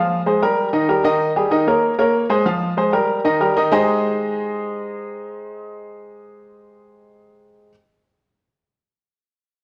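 Sunny and festive, this brief latin excerpt at 191 BPM in Ab major features a clear, natural baby grand piano playing solo and up front with short sustain, moving through a chord sequence from Fmadd9 to Abmaj7 and bathed in a wet large-studio reverb and the worn, warbling pitch drift of old cassette tape.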